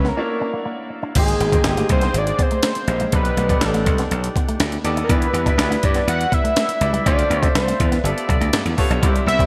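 A fat, detuned sawtooth lead carries the melody over clear baby grand piano with lush chorus, slap bass that sits bright and punchy up front, a gritty, compressed breakbeat kit with a thumpy kick, and a dark envelope-filtered guitar riff tucked in the background, with a brief break running from 0.2 to 1.2 seconds. At 1.2 seconds a mellow, distant horn section joins with a tight second line as the harmony moves through lush jazz chords such as G#maj9, B7alt and Dm9. This slick, nocturnal slice of polished 1980s jazz-funk pop is cut from a longer piece and carries a bright digital sheen and a moderate plate reverb.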